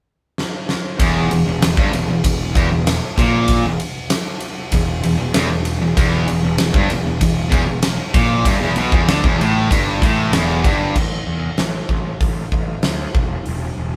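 Driving and aggressive, this hard rock excerpt moves at 96 BPM in a straight 4/4, cut from a longer piece in E minor. A huge arena drum kit opens with a fill at 0.4 seconds, its punchy kick, fat snare and bright cymbals sitting up front in a pumping hall sound. At 1.0 seconds the band crashes in on an E minor riff, led by a sharp, overdriven electric guitar up front and joined by a semi-hollow guitar with a rounder, hollow-body tone tucked in the background. Beneath them a growly fuzz bass, picked and overdriven, digs into the low end. Around 11.0 seconds the guitars drop away as the harmony shifts to A5, leaving drums and bass to carry on, with moderate room reverb giving the whole performance the feel of a band playing live together.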